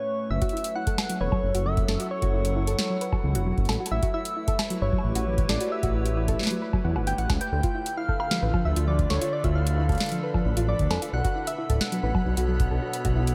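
An echo-heavy mix with light reverb gives this short IDM excerpt an eerie, glitchy atmosphere at 133 BPM in a straight 4/4, set in F# phrygian. A warbling, lo-fi tape-like pad holds nostalgic sustained chords from the very start, moving through F#m7, A7, Dmadd9 and Bm7, while a round, keys-like FM synth lead with chorus, tape echo and shimmer reverb carries the melody between C#5 and G5. At 0.3 seconds a dark, detuned saw bass enters up front with a deep, rumbling, beating tone, and just after, a soft pluck with chorus, dub echo and shimmer reverb spins gentle, decaying arpeggios. The drums arrive at 0.4 seconds: a tape-warm electronic kick drum gives a deep analog thump, and a booming analog drum machine, sent through dub echo, adds bongos, metallic hats and a crisp snare. From 8.1 seconds a grainy, flickering granular texture drifts in the background, bathed in shimmer reverb.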